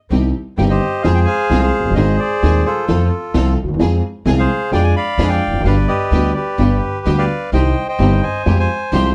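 At 129 BPM in 4/4 with a rubato feel, this tense, dramatic tango fragment in C harmonic minor moves from Cm through Fm, Ab and a diminished chord to G before returning to Cm and closing on Fmadd9. A dark, intimate upright piano with audible action noise and short sustain carries the accompaniment over a woody, pizzicato upright bass, while a bright, lush bowed string section adds focused stabs with vibrato. From 0.6 seconds a reedy, up-front bandoneon with a boxy small-room sound takes the melody, and light reverb surrounds the whole.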